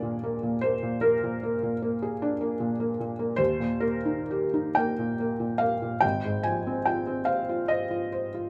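A felt-muted upright piano plays alone through this brief, tender and nostalgic fragment of a romantic classical nocturne, its rubato lines in 12/8 spanning Ab1 to Ab5 with a soft, intimate, closely miked tone of short sustain, set up front in a moderate studio reverb as the harmony moves from Bb7/Eb to Eb at 3.4 seconds and on to Fm/Ab at 6.0 seconds.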